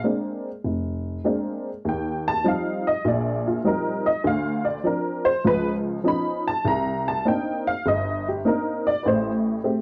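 Solo jazz at 100 BPM in a relaxed 4/4 swing, this warm fragment cut from a longer piece features a single honky-tonk upright piano, its detuned, jangly, woody voice sitting close to the ear with short sustain as it ranges from F1 to B5. The chords move through Bb9, Eb69, Dm7, C#9, Cm9 and Am7 across its 9.8 seconds. A moderate club reverb surrounds the piano, and the vintage sound comes through worn cassette tape with a warbling pitch drift and a dulled top end.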